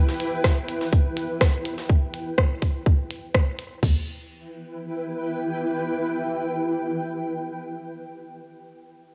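A lightly reverberant home cassette recording with a tape sheen frames this clinical, hypnotic minimal techno snippet in E minor at 124 BPM, resting on a single E minor chord. A blurred, detuned granular cloud pad with a slow attack and long release sits up front with its own reverb and sidechain pumping, while a gritty, compressed sampler-style breakbeat kit adds filtered hi-hat and a medium-tuned snare only until 1.9 s. A clicky, tape-tinged minimal kit of hats and rim clicks and a layered garage kit with a tight kick, crash and toms both sit up front until about 3.7 s and 3.9 s respectively, after which the evolving, mellow pad carries on alone.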